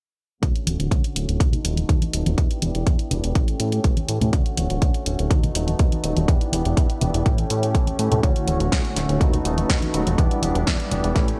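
Feel-good and joyful, this filtered disco house excerpt rides a filter sweep across its full length, with a punchy, up-front electronic kick, a house kit of crisp snare and bright hi-hats, and soft-handed tambourine and congas set back in the mix. A funky, plucky analog bass, a twangy clean electric guitar riff recorded direct, and sustained chords from an earthy, distant chamber string section all pump with sidechain and sit under a low-pass filter, cycling through Dmaj7, B7/D#, Em7 and A7. At 8.2 seconds a gritty, reedy overdriven electric piano joins with fast tremolo and phaser, all framed by light reverb and a glossy 1980s-style digital sheen.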